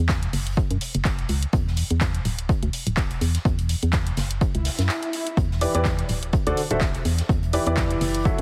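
A hollow, organ-like FM bass opens this energetic, bittersweet piano house piece at 125 BPM in E minor, pumping against a punchy analog kick, overdriven handclaps and hi-hat from a layered house kit, and a soft-mallet kit whose hats and fat snare sit in the background, all moving with a swung 16th-note feel. An electronic swell arrives at 4.6 seconds, leading into a brief break, and at 5.6 seconds a bright, woody upright piano takes up an up-front riff over Em7 and D7 chords, its audible action noise and long sustain colored by tape echo and sidechain pumping. Light reverb and a heavily compressed, radio-like sound give this short cut a dense, forward character.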